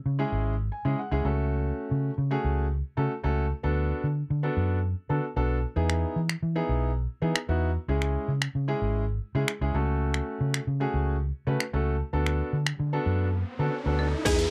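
A dark, round, foam-muted electric bass sits up front with a punchy, amped tone and a sidechain pump, opening this upbeat, carefree dance-pop excerpt at 113 BPM in a straight 4/4. A concert grand piano with a warm, deep low end also pumps along, adding a short fill at 0.5 seconds while the harmony moves through C#m, F#m/C#, Bm7/D and Emaj7. A layered electronic house kit arrives at 5.9 seconds, with a punchy kick, hi-hat, finger snaps, shaker and crash cymbal. An electronic riser enters at 13.2 seconds before a brief silent gap. In the final moments, a woody, boxy marimba struck with hard mallets appears with a slapback echo, and a clean, compressed, direct-recorded electric guitar picks a tiny riff through lush chorus. The whole sound is dry and close, like a 1970s studio recording.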